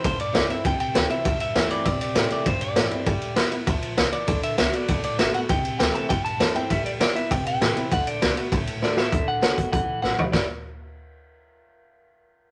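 Retro and rowdy, this fast rockabilly excerpt pairs a twangy, slightly broken-up electric guitar melody with a bright, picked steel-string acoustic guitar and a woody, thumpy pizzicato upright bass sitting in the background, all driven by a saturated, gritty garage drum kit placed up front in a small room, with drum fills at 8.8 and 10.0 seconds leading into new sections.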